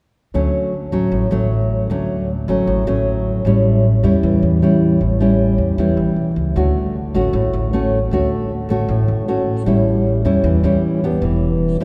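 A fingerpicked nylon-string guitar sits up front in this breezy, romantic bossa nova passage, its classical tone warm and close enough that finger squeaks come through on the strings. It plays accompaniment across the whole clip, from 0.3 to 11.8 seconds, ranging from A2 to G4 over a straight 4/4 feel at 154 BPM in D major, tuned to A4 = 441 Hz. Beneath it, a pizzicato upright bass with steel strings and a woody tone holds down the low end from E1 to E2, sitting lower in the mix than the guitar. The harmony moves between Dmaj7 and A7, then turns to Em7 at 11.2 seconds. A wet cathedral reverb with a 4.9-second tail places the duo in a church or concert hall, giving this short cut from a longer piece a spacious air.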